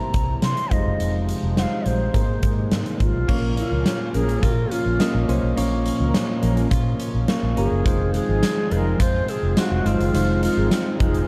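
A mellow, airy bansuri carries the melody through this romantic, glossy 1980s-style pop excerpt, its bamboo tone softened by vibrato and rolled-off highs over a straight 105 BPM pulse in 4/4. Underneath, soft, warbling electric-piano-like synth keys with chorus supply the accompaniment, while a very quiet, shimmering pulse-width pad holds sustained chords. A huge arena drum kit sits up front with a punchy kick, bright cymbals, snare, hi-hat, crash and tambourine in a pumping hall sound, and a round, foam-muted fingered electric bass anchors the low end. From 3.3 seconds a clean, direct-recorded electric guitar riff enters in the background, followed at 3.7 seconds by mellow, detuned synth brass stabs with chorus and tape echo. The harmony moves from C7 through Fm7 and Abadd9 to a long Bbm before returning to Fm7, all set in a dark production with light studio reverb.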